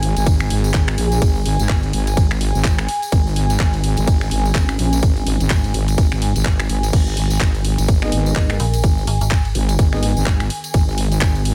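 A heavy, saturated wobble bass sits up front in this aggressive, bouncy bass house excerpt at 126 BPM in G# minor, pumping against a tight electronic kick while a garage kit with bright hats, snaps, claps, crash and ride, plus a jingly tambourine in the background, carries a swung 16th-note feel. Beneath them, a very quiet, evolving pad with a filter swell holds sustained chords and a deep, moody ambient pad adds a wave-folded, ring-modulated texture, all resting on a single G#m chord. At 8.0 s a smooth, vintage baby grand piano drops in with delayed stabs, and at 8.6 s a brief metallic FM bass with tube saturation adds a digital edge.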